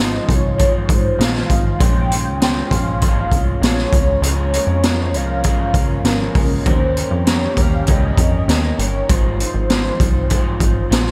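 This short, hazy, laid-back excerpt of indie bedroom pop opens with a velvety synth lead carrying the melody, its detuned sawtooth tone smoothed by analog chorus and vibrato. Beneath it, an electric guitar through a small old amp picks out slightly broken-up accompaniment with lush chorus and a warbly pitch drift, while a very quiet phased pad swirls and evolves in sustained chords. A plucky analog bass sits prominently underneath, punchy and funky with a fast-attack, decaying filter pluck. At 0.3 seconds a raw garage drum kit arrives up front with hi-hat, a punchy kick and a high-tuned snare, its saturated, gritty sound given a rolled-off top and gated reverb. The harmony moves from Ab6 through Bbm9, Db6 and Eb7 before returning to Ab6 at 9.1 seconds, all framed by light reverb and a bright 1980s-style digital production.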